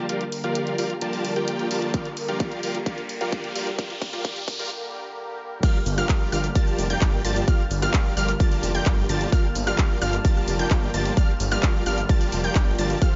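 Over a straight 4/4 pulse, this anthemic, powerful festival progressive house clip builds from a filter-swept opening, where a huge, up-front compressed supersaw riff rides a lush, nasal unison pad in the background, a riser enters at 1.0 seconds and a pop drum kit of hi-hat, cabasa, handclaps and crash fills alongside a punchy electronic kick, then after a brief break drops at 5.6 seconds into pumping sidechained energy as a bright, ring-modulated unison pluck arpeggio and a saturated, detuned saw bass join, all bathed in digital ambience.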